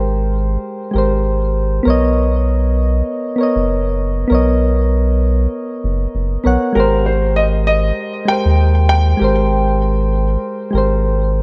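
A lightly swung sixteenth-note feel in 4/4 carries this brief sunset chillout fragment, cut from a longer piece, with a warm, sunny mood. Soft, gentle electric-piano-like synth keys hold the accompaniment throughout, their decaying tones shimmering with chorus and trailed by delay. Beneath them a round analog bass sits up front with a deep, nasal tone and sustained notes. The harmony moves from Abmaj9 to Bmaj9 and then returns to Abmaj9. At 6.8 seconds a dark grand piano enters with a mellow, vintage melody of short, smooth notes echoed by delay, and it falls away at 9.8 seconds. A moderate plate reverb gives the whole mix a warm, dusky glow.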